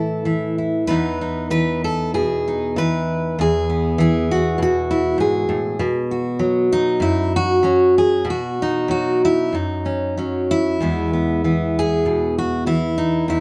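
Played with a loose, rubato feel around 97 BPM in 4/4, this short folk excerpt in E major features a solo fingerpicked steel-string acoustic guitar with a full-bodied, jumbo tone, sitting up front and ranging from E2 to B4. The mood is hopeful and nostalgic, moving through chords like Emaj7 and Badd9 before settling on E at 10.8 seconds. A moderate studio reverb and dark production give the recording a gentle, rounded glow.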